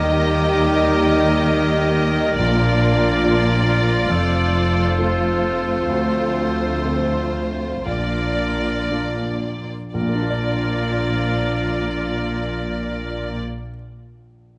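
A hopeful, moving cinematic passage opens at once with the full orchestra: bowed violins carry the melody with smooth vibrato, while a second violin line, an airy flute section, a punchy solo oboe and a dark, distant clarinet weave supporting lines around it. Beneath them, French horns hold roomy, sustained chords, lush violas with portamento and a mellow, vintage grand piano fill out the accompaniment, and cellos and double basses ground the harmony through a gentle, rubato slowing from 0.7 to 9.9 seconds. Heard through close, detailed microphones in light reverb, the strings and winds fall away at 13.4 seconds, leaving the soft piano alone until 14.6 seconds in this fragment of a longer piece.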